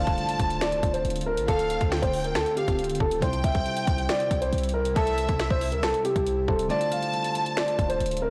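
Dark and brooding, this short excerpt from a longer half-time trap and hip hop piece in D minor moves at 138 BPM over Dm7 and C chords, led by a boxy, intimate concert grand piano with audible action noise and delay, joined by a lush, bowed violin section with vibrato and delay as a second line. Soft, round electric-piano-like synth keys with chorus and a blurred, evolving granular cloud pad in the background fill out the harmony, while a deep, boomy 808-style bass anchors the low end. The up-front trap kit brings a hard-clipped kick, sharp snare, metallic hats and finger snaps, with a barely audible impact near the start and the kick dropping out from 6.7 to 7.6 seconds, all within a blown-out, overdriven mix dusted with vinyl crackle.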